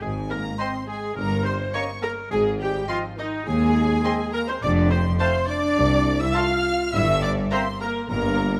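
In straight 4/4 at 104 BPM, this playful, sneaky film cue, cut from a longer piece, moves through a short section built on Ab, F and diminished harmony, with French horns holding sustained chords over a bass of mellow, distant tuba, cellos and double basses while the rich violas and a roomy bassoon supply accompaniment. A violin section carries the melody from 0.6 s, surrounded by second lines from a close-miked oboe, a second violin section, a bright vintage clarinet and a very quiet, airy flute. Everything sits in a moderate scoring-stage reverb that gives the mischievous orchestral colours a lush, open glow.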